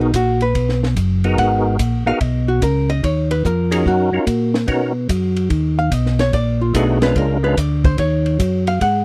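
A swung 4/4 groove at 145 BPM drives this smoky, soulful soul jazz organ trio passage in Eb minor, cut from a longer piece. The compact cocktail drum kit sits up front with a dry acoustic sound, dark cymbals, a high-tuned snare and a punchy kick, with hi-hat, ride, snare and kick in play from 0.1 s. Underneath, a smooth, clean tonewheel organ carries the bass line through a slow rotary speaker, while a percussive tonewheel organ takes the melody with a fat tone, third-harmonic percussion, key click and chorus vibrato on its slow rotary speaker until 7.6 s. The hollow-body electric guitar, dark, picked and compressed, is featured in a solo across the whole 9-second stretch. The harmony moves through Abm7, Ebm7, Bmaj7 and a tense Bb7#9 before settling back on Ebm7, all captured in a close, dry 1970s-style studio sound with little reverb.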